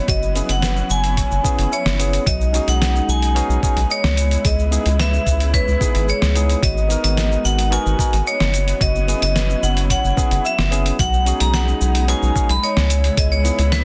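Ringing hard-mallet vibraphone carries the melody through tape echo in this wistful, relaxed sunset chillout excerpt, over a deep, up-front analog bass, a gritty sampler-style kit of thumpy electronic kick, fat snare, hi-hat and shaker, a barky, lightly overdriven tine electric piano with delay, a soft chorused pluck playing arpeggios in the background, and distant, woody symphonic strings holding lush sustained chords, all in light reverb under a dense, heavily limited master.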